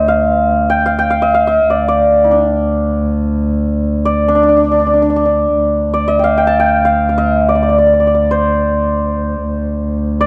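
In free time, this melancholic Persian modal ensemble piece in D dastgah shur unfolds with a sense of longing, its opening phrase returning at 5.6 seconds. A shimmering, hammered santur carries the melody up front between D4 and A5, while a single bowed double bass holds an earthy D2 drone with light vibrato. The close, dry studio sound has a 1970s character, and the passage is cut from a longer piece.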